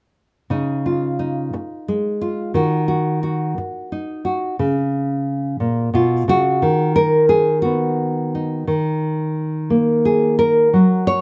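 Close, detailed microphones and light reverb frame this peaceful, nostalgic folk fragment, cut from a longer piece, in which a single up-front nylon-string guitar is fingerpicked in a classical manner at 59 BPM in a straight 6/8, its finger squeaks audible as it moves from Dbadd9 and Ebm into a second section at 4.6 seconds that passes through Bbm and Cb/Eb before settling on Eb5.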